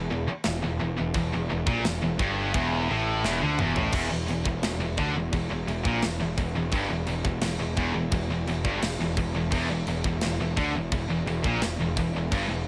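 A light reverb gives this short cut from a longer heavy metal piece a sense of space, with a punchy, fuzzed bass and an acoustic drum kit in a big room sitting up front. The mood is heavy and epic, moving at 86 BPM in a straight 4/4 on E minor, resting on an E minor chord. Three picked guitars play the riff from E2 to D3 in the background: one overdriven, one distorted and high-gain, and one scooped, double-tracked and high-gain, all with a bright edge. Directly under them, the bass, recorded both direct and through an amp, plays the bass line an octave lower, from E1 to D2. The tight metal kit, with its medium-tuned snare, tight kick, crash cymbal and toms, enters at 0.4 seconds. A drum fill from 3.2 to 3.9 seconds carries the music into a longer second part that runs to the end at 12.7 seconds.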